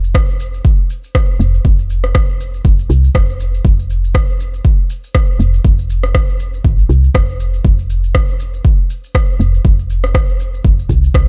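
A dry, dark mix with little reverb carries this earthy afro house fragment, its swung sixteenths giving the groove a relaxed sway. Up front, a deep, overdriven electronic kick drum enters at 0.1 s beside a round, woody FM bass that pumps with sidechain compression and plays low, soft notes with a fast attack and a decaying tail. Behind them, an electronic shaker and rim click, gritty with overdrive and re-recorded in a small room, sit lower in the mix throughout.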